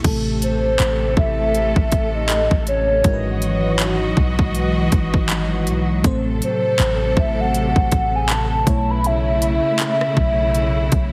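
A hollow, woody clarinet-like synth lead with chorus and vibrato carries the romantic melody from 0.4 seconds in this smooth contemporary R&B excerpt, set over a dreamy FM electric piano with phaser, a clear symphonic string section pumping under sidechain, a deep, boomy 808-style bass, and an up-front trap kit of hard-clipped kick, crisp hi-hats, handclaps, rim clicks and crash, all in a heavily compressed radio sound with light reverb.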